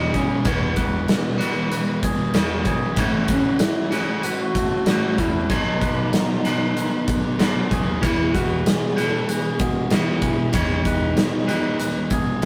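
A huge arena drum kit sits up front from 0.1 s, its punchy kick, medium-tuned snare and hi-hat ringing in a pumping hall room as it drives this hazy, blissful shoegaze and dream pop rock piece at 95 BPM in E major, moving from E to A, B7 and Emaj7. A biting overdriven guitar riff shares the foreground, while a thick fuzz guitar riff, a twangy, bright, clean arpeggiated guitar and a growling overdriven picked bass sit further back. A reedy, woody FM lead carries the soft-attack, sustained melody through chorus and tremolo, and the mix sits in a wet studio ambience with the rough, saturated feel of a rehearsal-room recording.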